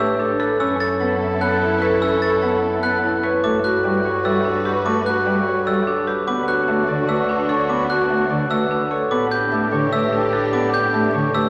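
Minimalist classical pattern music in a propulsive, bright 7/8 at 296 BPM in D major, this excerpt has a ringing, fingerpicked concert harp carrying the melody while a distant, roomy clarinet traces a second line in the background and a chamber organ's light flute stops, with their chiff, fill in the accompaniment. Bell-like glockenspiel struck with brass mallets and hard-mallet marimba spin arpeggios over lush, bowed symphonic strings holding sustained chords, with a smooth, close solo cello anchoring the bass. The harmony moves from A9sus4 through F#m7, Gmaj9#11 and Dmaj13, all bathed in a wet scoring-stage reverb with a layer of vinyl crackle.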